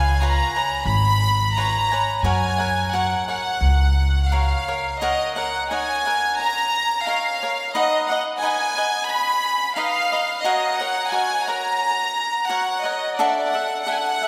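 Bathed in the long, wet reverb of a church, this romantic and proud mariachi excerpt sets a clear, biting chamber violin section up front on the melody with light vibrato, over crisp picked cavaquinho accompaniment and a woody pizzicato upright bass that drops out at 4.5 seconds.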